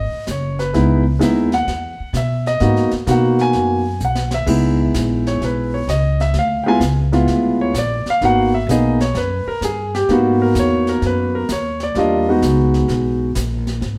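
A warm concert grand piano leads this smoky, swinging jazz piano trio excerpt, carrying the melody between G3 and G#5 with a smooth, vintage tone and deep low end that sits up front. The upright bass holds down the bottom with woody, thumpy gut-string pizzicato, dark in color and close to the listener, while the brush kit enters at 0.3 seconds with dark cymbals, a high-tuned snare and a boomy kick, adding a short fill around 4.0 seconds. At 128 BPM in 4/4 with a swing feel on the eighths, the tune moves through G# minor changes, touching a diminished chord before settling onto Emaj7 at 12.0 seconds. The piano drops out at 13.3 seconds, leaving bass and drums to ring on briefly. The trio sounds like a band playing live together in a stone room, its reverb lending a wet ambience to the performance.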